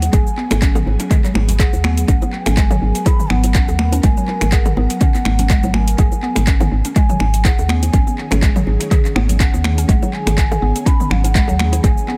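A breathy bansuri opens this hypnotic, driving afro house piece at 123 BPM in G# minor, its hollow, close-miked bamboo tone carrying the melody with vibrato and dub echo, while an ethereal pad sustains chords in the background through ensemble chorus, phaser and vintage 12-bit sampler grit. From the start, a dark, round FM bass pumps to the sidechain, a deep house kit adds cabasa, finger snaps, handclaps, metallic hi-hats and toms with overdrive and analog delay, and soft-handed, high-tuned bongos sit close and dry behind. At 0.1 seconds an overdriven, up-front electronic kick drum anchors the groove, joined by bright, thin-skinned congas and a mallet-like FM pluck whose warbling, percussive arpeggios shimmer with chorus and dub echo. The 16th notes carry a light swing, and the harmony moves from G#m7 to C#sus2/G# at 6.0 seconds. Wrapped in an echo-heavy digital ambience, this is a brief cut from a longer track.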